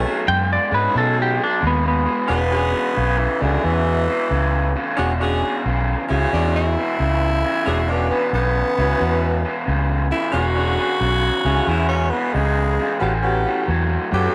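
A laid-back, swaggering electric blues shuffle swings at 90 BPM in 4/4, cut from a longer piece, with a round, foam-muted vintage bass and a raw, lo-fi overdriven garage guitar riff with spring reverb sitting up front. A bright, twangy lap steel carries the slide melody from 0.3 to 2.3 seconds, over a B13 chord, while a clear saxophone section adds smooth stabs with light vibrato. At 2.3 seconds the harmony moves to E13 and a raspy, growling tenor saxophone takes a gritty jazz-style solo, with the chord shifting to A13 at 13.0 seconds, all in a lightly reverberant room.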